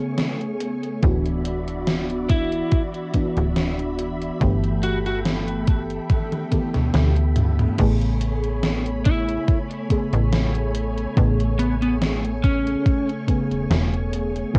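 A dreamy, faded vaporwave piece in A major at a slow 71 BPM with a light sixteenth-note swing, cut from a longer work and sounding like a home recording on cassette. It opens on a lush, warbling FM electric piano layered with a soft pad, dark and detuned under analog chorus, tape echo and plate reverb, while a silky string machine holds sustained chords above it with a slow attack and ensemble chorus. A gated 80s digital drum machine enters almost at once, its gated snare, crash, hi-hat and toms carrying overdrive and 12-bit sampler grit, and at 1.0 seconds a thumpy, overdriven electronic kick and a snappy FM bass with a metallic attack join up front. From 2.3 seconds a slightly broken-up, compressed lead guitar carries the melody through tape echo and plate reverb. The harmony drifts from Amaj9 through D6/9 and G6/9, and a drum fill leads back to Amaj9 as the second section begins at 7.8 seconds.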